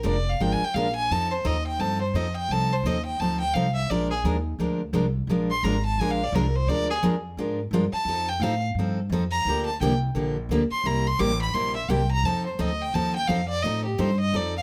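A light reverb surrounds a trio, with violin, guitar and bass each sitting up front. This lively, charming slice of acoustic string swing in the jazz manouche style moves at 172 BPM in 4/4, with a swung eighth-note feel in F mixolydian. The bowed violin carries the melody as a solo from start to finish, its reedy, gut-string tone colored by light vibrato and a period-style character. Beneath it, a picked steel-string dreadnought guitar supplies bright, full-bodied accompaniment on fresh strings, while a pizzicato upright bass adds a woody, thumpy foundation. The harmony cycles through dominant-seventh chords such as Bb7 and F7 before turning through Gm7 and C7 back to F7 near 12.2 seconds, in this short excerpt cut from a longer piece.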